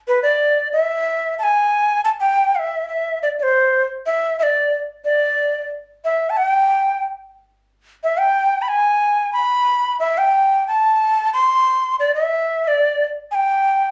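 A large wooden quena plays alone from 0.1 seconds, its end-blown tone breathy and bright, with a crisp, chiffy attack and expressive vibrato sitting up front in this melancholic, wistful Andean folk passage in a straight three-four. The sound is a phone recording in a club-sized room, with light reverb and a faint mains hum. The passage is cut from a longer piece.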